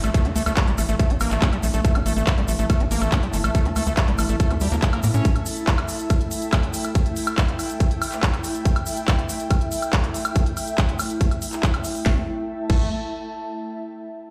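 Driving and hypnotic, this psychedelic trance excerpt rides an overdriven, up-front electronic kick and a tight, punchy sequencer bass beneath a squelchy, gritty acid bass riff with distortion and dub echo, while a techno kit of cracking snare, smooth hats, handclaps, woodblock and crash, a grainy egg shaker in the background, a very quiet downlifter at the start and an ethereal, detuned pad with ensemble chorus and sidechain pumping fill a stone room as if played on a big sound system, the two basses dropping out at 5.2 seconds and returning at 12.1 seconds.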